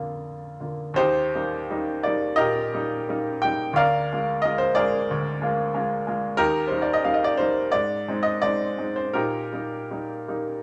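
Lyrical and hopeful, this romantic character piece for solo piano unfolds with an unhurried, rubato feel, its beats stretching and yielding as the harmony moves from Bb through Eb, Bb7/D and Ab before settling on Eb/Bb. The baby grand sounds clear and natural, placed up front with a short sustain, ranging from D2 to G5. A moderate large-studio reverb gives it some space, and the passage, lifted from a longer piece, ends at 10.6 seconds.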